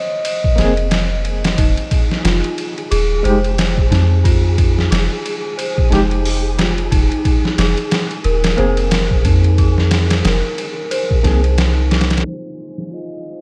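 Dark and smoky, this trip hop excerpt in F minor moves at 90 BPM with a swung 16th-note feel, its gritty, pitched-down sampler drums sitting up front with a thumpy kick while a round, deep 808-style bass anchors the shifts between Abadd9 and Fm7. A barky, lightly overdriven electric piano with fast tremolo hovers in the background, a delicate bell-like celesta plays arpeggios from 1.6 seconds, and a flickering granular texture shimmers beneath, all within a dreamy mix soaked in cathedral reverb. A pure, breathy sine lead sings briefly at the start and returns at 12.3 seconds, as a very quiet sul tasto violin section enters on sustained chords and a filter sweep moves over the celesta.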